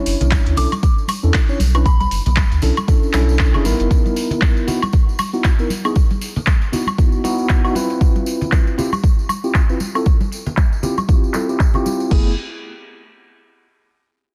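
A swung sixteenth-note deep house groove sits under a deep, up-front electronic kick, with a tape-warm kit of metallic hi-hats, handclaps, woodblock and crash cymbal, all run through a filter sweep. Bright, close congas and a jingly tambourine add percussive texture. Mellow tine electric piano stabs move through Bm11, Badd11, Cadd11 and F#m11, pumping against the kick and colored by a low-pass filter and analog delay. A round sine sub bass pumps underneath until 3.9 seconds, then returns at 12.1 seconds, while a soft, pure FM bell with chorus and delay rings out briefly near the start. The late-night, hypnotic excerpt sits in a digital ambience with a dense, heavily limited modern master.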